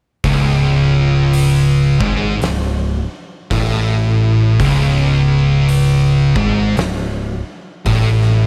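A slow, heavy 4/4 at 55 BPM drags along on swung eighth notes, giving this short stoner and doom metal excerpt a sludgy, ominous sway. Two thick fuzz guitars carry the riff together between C#2 and A2 over a C#5 power chord, one sitting up front with a warmer distorted tone, the other darker and slightly lower in the mix, entering at 0.3 seconds. Beneath them, an overdriven picked electric bass, direct and amped, holds down the low end from C#1 to A1. An oversized, low-tuned acoustic kit of kick, snare and hi-hat pounds underneath, its punchy kick and fat snare sounding saturated and gritty in a bright stone room. A small room reverb surrounds the band, and the whole passage, lifted from a longer piece, runs from 0.2 to 8.5 seconds as a single unbroken section.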